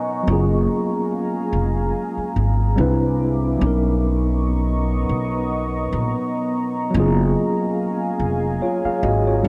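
Dreamy and nostalgic, this lo-fi hip hop fragment from a longer piece drifts along at 72 BPM in 4/4, with a gentle swing on the sixteenths in F# major. A mellow tine electric piano opens with a fill at 0.0 s and then carries the accompaniment up front, its clean tone softened by cassette tape coloring and a low-pass filter. Underneath, a deep, moody ambient pad holds sustained chords, built from detuned sawtooth, sine and triangle layers with a sub octave, wave-folding and ring modulation, and shaped by a slow attack, long release, chorus, its own reverb and a dark low-pass filter. An acoustic upright bass enters at 0.3 s, played pizzicato on gut strings with a woody, thumpy, warm tone placed up front. The harmony moves from F#maj9 to Cmaj9 at 2.8 s, then Bmaj9, before returning to F#maj9, and the whole mix is soaked in a moderate cathedral reverb that deepens its hazy, dreamlike quality.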